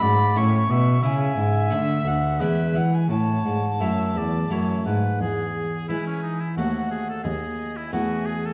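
A bright oboe carries the melody in this radiant, dance-like baroque-style sonata movement in triple time, its light vibrato and soft attack keeping the line present. Above it, a single bowed violin plays a second line with a dark, nasal gut-string tone that sounds reedy and distant. A plucked harpsichord in the French style, with one set of strings, sits up front and fills out the accompaniment across a broad range. One bowed cello anchors the bass in period style, with a smooth top to its sound. All four parts play together throughout this short cut from a longer piece, with the harmony moving to a diminished chord at 6.6 s and then to a dominant seventh. A wet recital hall reverb surrounds the ensemble, and the warm production carries a layer of vinyl crackle.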